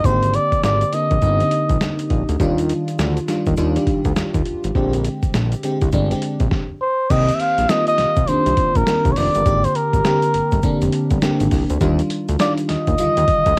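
A cup-muted trumpet carries the melody in a mellow, veiled jazz style, its breathy tone close and up front with a light vibrato and a cassette tape haze; it sounds briefly at the start, then returns at 6.8 seconds and plays on to the end. This bouncy, punchy R&B cut in the new jack swing vein rides a swung 4/4 groove, taken from a longer piece. Beneath the horn, an FM electric piano layered with a soft pad supplies lush, dreamy chords through chorus and phaser, moving through rich major-ninth and thirteenth harmonies. A fat analog bass with a detuned sawtooth edge and a filter sweep sits thick and forward. The boom bap sampler-style kit hits hard, with a thumpy kick, medium-tuned snare, hi-hat, crash and tambourine, compressed and overdriven into a gritty crunch, while a grainy egg shaker ticks quietly in the background. The sound is dry and close, with the intimate character of a home cassette recording.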